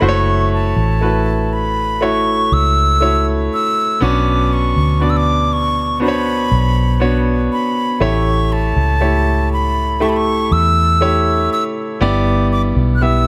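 Heartbroken and emotional, this pop ballad moves at a slow 60 BPM in a straight 4/4, tuned slightly below standard pitch to A4 = 438 Hz. A reedy, airy concert flute carries the melody between A5 and F#6 with a straight, tongued tone, sounding throughout the 13.3 seconds of this fragment cut from a longer piece. Beneath it, a clear, polished baby grand piano provides accompaniment, sitting present and up front in the mix. A vintage fingered electric bass, foam-muted, dark and round, anchors the low end with an amped character and also sits up front. The harmony drifts from F#m7 to Bmadd9, then A7, before settling on Em7/G at 12.0 seconds, all set in a light studio reverb.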